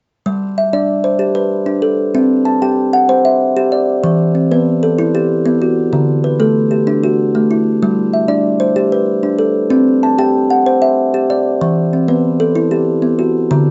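Softened at the top and bathed in light reverb, this brief cut from a longer southern African traditional piece sets an up-front, woody, ringing thumb-plucked kalimba to rippling, hypnotic arpeggios in a straight 12/8 that cycle through G, C, Em and D from 0.3 to 13.7 seconds.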